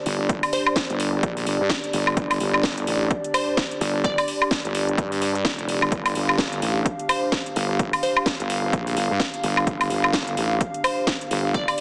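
Heavily compressed and boxed in like a small radio speaker, with a light digital ambience, this swaggering, bouncy bass house clip swings on a 4/4 groove. A heavy, saturated wobble bass sits up front with sidechain pumping, joined by a punchy overdriven electronic kick and a layered house kit of cracking snare, metallic hi-hats and woodblock. A moody, nasal analog pad holds dark sustained chords beneath, and a glassy, crystalline wavetable pluck with dub echo comes in at 0.5 seconds, drops out at 4.2 and returns at 7.1.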